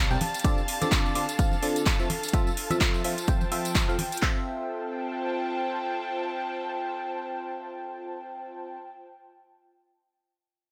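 A light reverb surrounds this joyful, feel-good piano house excerpt. It moves at 127 BPM in 4/4 with a gentle sixteenth-note swing in F major, passing from Dm7 to Fmaj7. A biting, percussive FM electric piano carries the riff through a phaser, low-pass filter and dub echo, and a soft, warbling pad with a breathy noise layer and chorus swells in slowly beneath it; both pump to the sidechain and run to 8.8 seconds. In the background, a dark, woody violin section holds lush, distant chords with vibrato, also pumping. Two layered, tape-warm house drum kits sit up front, one with a punchy kick and handclaps and the other with metallic hi-hats and claps, joined by close, acoustic tambourine and congas. The violins, percussion and drums all drop out around 4.2 seconds, leaving the piano and pad to carry the second section alone.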